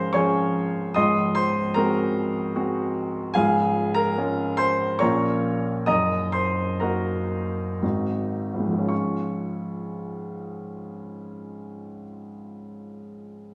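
This is a romantic classical character piece for solo piano in D-flat major, hopeful and lyrical in mood. It moves in 3/4 at 53 to 76 BPM with a free rubato feel, and the pace slows from 2.2 s until the opening passage closes at 8.9 s. A baby grand piano is the only instrument, sounding clear and open with a long sustain and placed up front, spanning from deep bass notes to bright upper tones. The harmony moves from D-flat through B-flat minor and an A-flat ninth chord before settling back on D-flat as a new passage begins at 8.9 s. A wet recital hall reverb with a touch of small-room ambience surrounds the playing, and the recording is cut from a longer piece.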